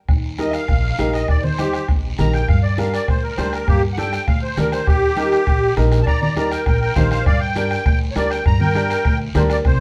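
A reedy, shimmering musette accordion takes an up-front solo from 0.4 s in this fiery, driving cumbia excerpt at 201 BPM in G minor, over a woody, dark pizzicato upright bass, a close soft-beater bombo, bright hard-hand congas set in the background, a raspy guiro and a brilliant, open upright piano, the band playing live together in a wet stone room as the harmony alternates between Eb and Gm.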